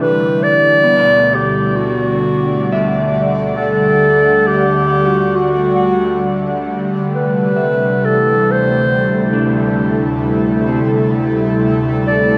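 Set in a straight, unhurried 4/4, this serene ambient fragment floats on a single harmonic shift, moving from Gmaj7/D to Am7/D at 7.1 seconds. Up front, a mellow solo clarinet carries the melody with a soft attack and a classical poise, its line trailing into a diffuse ambient delay. Beside it sits an airy, breathy pad of sustained chords, full-bodied and gently detuned with a chorus shimmer, its slow attack and long release blurring the harmony into a soft haze. A dark, slightly broken-up electric guitar picks out fingered arpeggios through its own diffuse delay, fading out across the whole passage, while a dark studio cello section holds a low D2 bass note in the background, fading in with an intimate sul tasto tone and light vibrato. A bright, nasal, string-like drone adds a faintly tense edge from the background, washed in its own built-in reverb. The whole mix sits in a wet concert-hall reverb laced with small-room ambience, giving the piece a spacious, enveloping glow.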